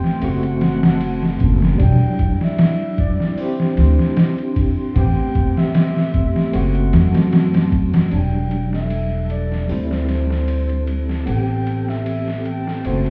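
Heard muffled through a wall with vinyl crackle and club reverb, this hypnotic, smoky trip hop excerpt moves at 76 BPM in E minor with a lazy swing, its gritty, pitched-down sampler drums and woody pizzicato upright bass sitting up front over a progression cycling from F#dim through Em7, D7sus4 and Am7. A barky, overdriven tine electric piano shimmers with fast tremolo and tape echo, while a dark, detuned analog pad with chorus hovers in the background and a pure wooden flute carries the melody with vibrato and its own tape echo. At 8.8 seconds a reversed, granular swelling texture drifts in quietly beneath the rest.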